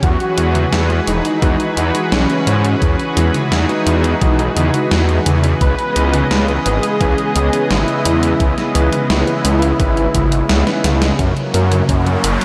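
Synthwave at 86 BPM in 4/4, this driving, cinematic passage is cut from a longer piece and sits in a dreamy mix soaked in a huge ambient reverb. A thick, up-front detuned saw bass with chorus anchors the low end, while a lush, bright unison pad carries sustained chords through Eadd9 and C#m7 with chorus and sidechain pumping. A bold, nasal unison lead with vibrato and delay sings the melody until 11.1 seconds. The thumpy electronic kick and a gated 80s digital drum machine supply hi-hat, toms and a gated-reverb snare, both re-recorded in a large room. A warm, vintage electric grand piano with a clangy bass, tape echo and a low-pass filter adds stabs in the background from 0.4 seconds. Near the close, a drum fill and band accent lead into an F# chord as the piano's filter sweeps and a background riser enters at 11.8 seconds.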